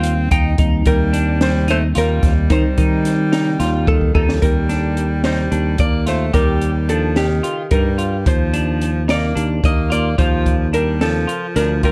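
An up-front fingered electric bass anchors this intricate, driving progressive instrumental in 7/8, a short section cut from a longer piece. An open jazz drum kit with a high-tuned snare, boomy kick and hi-hat pushes the uneven meter forward, and it plays a fill from 3.9 to 4.4 seconds that leads into the second section. The melody comes from a dark, hollow-body archtop guitar, miked and amplified, picked cleanly and trailed by delay. Beneath it, a bright alto saxophone carries a second line with vibrato and a soft attack. A clean, twangy electric guitar picks arpeggios through analog chorus, and a mellow tine electric piano adds very quiet accompaniment through its built-in speakers until 4.4 seconds. The production is warm and dusky, set in a small room ambience.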